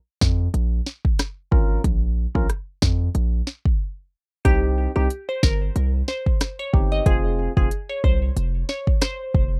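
Bouncy and sultry, this dancehall excerpt in C phrygian moves at 92 BPM with a swung sixteenth-note feel, its dark, warm production kept dry. An up-front electronic drum kit with deep kick, sharp snare, crisp hats and rim click drives alongside a punchy, heavy 808-style bass, while a hollow, organ-like stab with chorus enters at 1.5 seconds over chords moving from Bb minor to C minor and F minor. After a short break, a glassy, crystalline wavetable pluck carries the melody from 4.5 seconds, colored by ring modulation, a filter sweep, chorus and tape echo.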